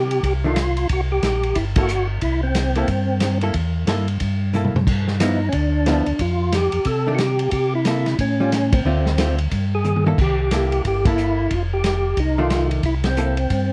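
A dark, lightly reverberant production frames this swinging, greasy soul jazz organ trio at 181 BPM in C mixolydian, where a fat, lightly overdriven tonewheel organ with percussive third-harmonic attack, key click and slow rotary speaker carries the melody over a round, mellow tonewheel organ bass line, a muffled, lo-fi vintage drum kit with tight kick and fills near 4.5 and 9.8 seconds, and a clean, compressed hollow-body archtop guitar accompanying from 0.4 seconds, with band accents punctuating the groove.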